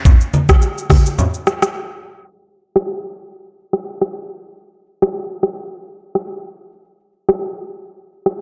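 A dreamy mix soaked in lush hall reverb and a low-pass filter frames this short, sunny afrobeats cut at 106 BPM in 4/4, with a lightly swung sixteenth-note feel. Up front, an electronic afro-pop drum kit lays down a knocking kick, smooth hi-hats, rim clicks and shaker from 0.1 to 8.4 seconds, while bright, thin-skinned, low-tuned congas, compressed and saturated, play alongside from the start only until 1.3 seconds. After a brief break from 1.8 to 2.3 seconds, the joyful groove moves into a new section that carries the drums alone to the end.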